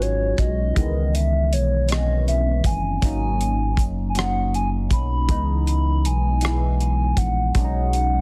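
A slow R&B groove in six-eight opens at once with every part sounding together, carrying a late-night, yearning mood through this short section cut from a longer piece. A hollow, woody synth lead with a clarinet-like tone sings the melody in a soft, mellow voice, its sustained notes touched with vibrato and a chorus shimmer. Beneath it, a barky tine electric piano, lightly overdriven through a combo amp and colored by a phaser, fills in the chords as they move from B6/9 through C#m7, G#9sus4 and C#m7 again before returning to B6/9. A round, deep analog bass sits up front with a dark, sustained tone, while a damped 70s acoustic kit keeps time with a tight kick, hi-hat and rim click, its dry sound rolled off at the top. The whole mix carries studio reverb and a heavily compressed, radio-like quality.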